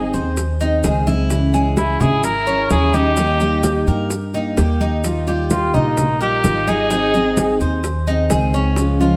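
The recording has a light reverb and sits a little back in the room, though the trumpet and upright bass come through up front. This is a danceable, warm-hearted slice of Cuban son and guajira in Ab major at 128 BPM in a straight 4/4, cut from a longer piece. A punchy, vintage-toned trumpet with vibrato and slapback echo carries the melody, while a lush bowed violin section plays a smooth second line in the background; both stop at 7.6 seconds. Underneath, a full-bodied dreadnought acoustic guitar picks the accompaniment, a bright, metallic tres with doubled strings spins arpeggios, and a woody, thumpy pizzicato upright bass anchors the low end. Round, low-tuned bongos and ringing congas played with soft hands sit behind, with grainy maracas close and dry, the percussion entering at 0.1 seconds. The chords move from Ab through Dbm and Eb to Ebadd9 before settling back on Ab.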